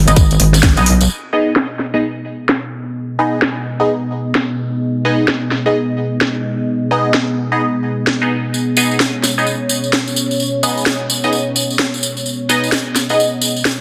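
Bass house at 129 BPM in G# minor, swung and aggressive with a swaggering edge, opening on a saturated, metallic FM wobble bass and a tight, layered electronic kick that drop out by 1.1 seconds, as the whole band hits an accent at 0.6 seconds. Nasal, band-passed sawtooth chord stabs with phaser, chorus and delay pump against the sidechain throughout, joined at 1.1 seconds by a deep, moody detuned analog pad that slowly blooms under a filter sweep. An overdriven garage kit with a cracking snare and filtered hats and cymbals drives the groove, also swept by a filter, while a jingly acoustic tambourine returns at 8.5 seconds, all in a dense, heavily limited modern mix with light digital ambience.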